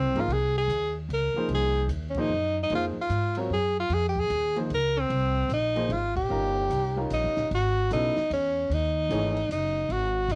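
Captured on a home cassette with light reverb, this short cut from a longer modal jazz piece moves at 150 BPM in a swung 3/4 with a searching, hypnotic mood in F minor, its harmony shifting from Fm7 to Eb7 and then G#m7. Up front, a bright, forceful tenor saxophone solos with vibrato and punchy attack, and beside it the woody pizzicato upright bass, steel-strung and saturated, carries the low end. A clear baby grand piano with short sustain accompanies, a dry compact cocktail kit with dark cymbals, high-tuned snare and punchy kick sits in the background, and the band hits accents at 2.1 and 6.1 seconds.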